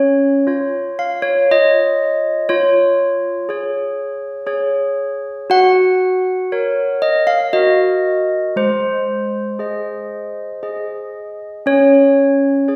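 Serene and festive, this short classical tune for handbells is cut from a longer piece and moves at an unhurried 59 BPM in a straight 3/4 lilt, set in Db major. The handbells play solo for the full 12.8 seconds, spanning Ab3 to Gb5 with medium clappers. Their tone is bell-like, clear and ringing, and the close-miked bells sound dry, full and up front. Around them, a recital hall lends a wet reverb that suggests a church or concert hall setting. The harmony moves from Db to Db/F, then to Gb and Ebm/Gb before arriving on Ab, with the chords giving way at 11.6 seconds.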